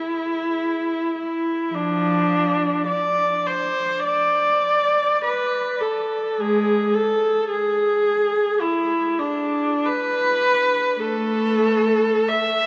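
Yearning and mournful, this 12.7-second excerpt of a free, expressive classical piece for solo viola unfolds in A minor with a rubato feel at roughly 43-55 BPM, its rich bowed tone shaped by vibrato and portamento and sitting up front within a wet cathedral reverb that lingers for 6.2 seconds.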